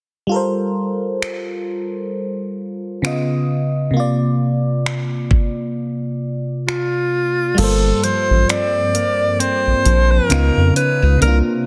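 A lazily swung sixteenth-note groove in 4/4 drives this moody, late-night contemporary R&B fragment, cut from a longer piece. An electronic trap kit arrives at 1.2 seconds with a knocking kick, bright hi-hats, finger snaps and crash cymbal, sitting up front with a tape-tinged sound and soft clipping on the snare. Also up front from 0.3 seconds, a glassy FM electric piano with a bell-like attack and a faint noise layer carries the minor-eleventh and ninth chords, its decaying tones colored by chorus and phaser. During a brief break, a breathy, close-miked alto saxophone enters at 6.7 seconds for an intimate, whispered jazz-style solo with vibrato. From 7.6 seconds the kick is muted while a deep, thick, saturated sine sub bass fills the low end up front, joined by a clean, direct-recorded electric guitar playing compressed, scooped picked arpeggios through harmonic tremolo, all in a dense, heavily limited mix with light reverb.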